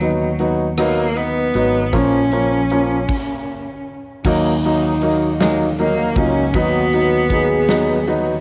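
A dry home cassette recording of an aching, dramatic six-eight pop ballad fragment, where a distant, bowed cello carries a smooth vibrato melody over an up-front, long-sustaining baby grand piano, a very quiet clean guitar picking direct-recorded arpeggios, a round, dark fretless bass and a huge arena drum kit with bright cymbals and a punchy kick, with a stop from 3.1 to 4.2 seconds before a warm French horn section adds a second line at 4.3 seconds.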